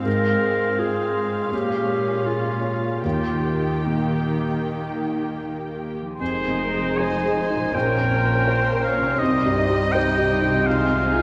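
Rubato and unhurried in four, this longing, bittersweet cinematic excerpt sets veiled con sordino violins singing the melody over a thick-felted upright piano with audible action noise, dark violas and cellos in the background, and a ringing, fingerpicked concert harp, while a smooth-topped clarinet up front gives way at 6.2 s to a clear solo oboe, a second violin line, a vintage-toned French horn section holding chords in the background, and lush double basses, the whole ensemble set in a resonant church acoustic.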